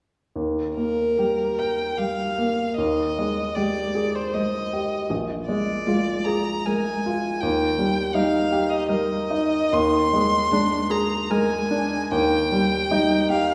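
A rich, bowed violin carries the tender melody with smooth, even vibrato, sitting up front in this slow, romantic classical piano trio movement in Eb major, moving in a rubato 3/4 at about 77 BPM. A clear, polished baby grand piano opens the accompaniment at 0.4 seconds, the violin joins at 0.8 seconds, and a warm cello follows at 1.2 seconds with a quieter, smoothly bowed second line. The trio is heard from further back in a recital hall with a generous, wet reverb, in a passage cut from a longer piece.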